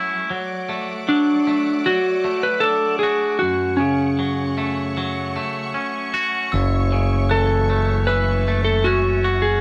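Post-rock at a slow 77 BPM in F# minor, this cinematic, melancholic passage is cut from a longer piece and captured as a band playing live in one room with light reverb. A twangy, bright electric guitar picks clean, compressed arpeggios up front from the start, while a lush bowed string section sits quietly behind it, holding sustained chords with vibrato and a smooth top. From 1.1 seconds a clean lap steel guitar carries the melody, its fingered slide lines warm and prominent in the middle register. At 6.5 seconds a growling picked electric bass arrives with overdrive, anchoring a low F#, and a glockenspiel played with soft plastic mallets adds ringing, bell-like arpeggios high in the background. The harmony moves from D over F# to F# minor and then to A over F#, keeping the same bass note under shifting colours.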